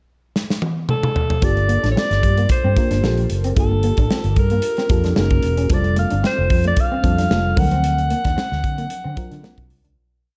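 A breathy alto saxophone plays a motif-based jazz melody with scooped notes over a crisp sixteenth-note drum groove with a tight kick, a round, agile fretless bass line with chromatic approach notes and lush chorus, dreamy, chorused FM electric piano chords with a soft pad layer, and a muted, slightly broken-up guitar line in the background, in a breezy, glossy piece of polished 1980s jazz-funk pop at 112 BPM that opens with a drum fill and begins fading out at 7.8 seconds.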